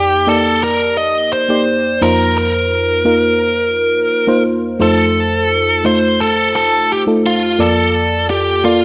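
Bathed in a moderate spring reverb and digital ambience, this nostalgic, romantic pop fragment puts a biting, bright, overdriven lead guitar melody up front over a mellow FM electric piano whose fast-attack, decaying tones carry a noise layer, the chords moving from Ebmaj7/F through F7sus4 and F7 to Bbmaj7/F across its 8.8 seconds.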